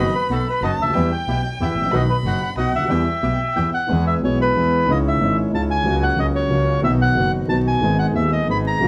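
Dark, crackling vinyl sound in a moderate studio room frames this dramatic, passionate tango at 183 BPM in a rubato 3/4, where a reedy, up-front bandoneon sings the melody through plate reverb over a woody, intimate upright piano with audible action noise, a clear, focused bowed double bass with vibrato, and a bright second bandoneon adding stabs in the background, while a soft-attack bowed violin traces an expressive second line with portamento until 3.7 s, just before the harmony turns from E harmonic minor to E major at 3.9 s.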